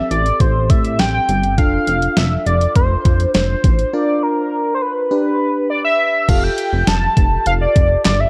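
Synth-pop at 102 BPM in 4/4 with an upbeat, wistful mood, this short cut from a longer piece moves through Am7, F6, Bb and G before shifting at 6.3 seconds onto Fadd9, carried by a bold, detuned sawtooth-and-triangle octave-doubled lead up front with chorus, phaser and tape echo, a glassy, bell-like FM electric piano with chorus, a retro, glossy pulse-wave synth bass with filter sweep and saturation, and a detuned 8-bit digital drum machine with thumpy kick, medium-tuned snare, hi-hat, handclaps and crash, all set in light digital reverb within a dark, warm production.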